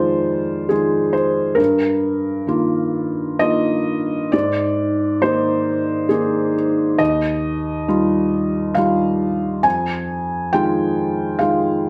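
A felt-muted upright piano plays alone from the first moment, opening on an Fm7 chord in a tender, intimate piece of neoclassical minimalist piano. The tempo sits around 68 BPM in 3/4, with a rubato feel that lets the time breathe, and the music rests in Eb major, tuned slightly low at A4 = 439 Hz. The harmony moves through Ebadd9/G, Abadd9 and Ebadd9 before returning to Fm7 at 9.6 seconds, the piano ranging from Eb2 up to Ab5. Its tone is soft, mellow and dark, with a boxy character and audible action noise that place the listener close to the instrument, while a slapback echo trails its notes. Light reverb surrounds the up-front piano, and this short passage of about 11.9 seconds is taken from a longer piece.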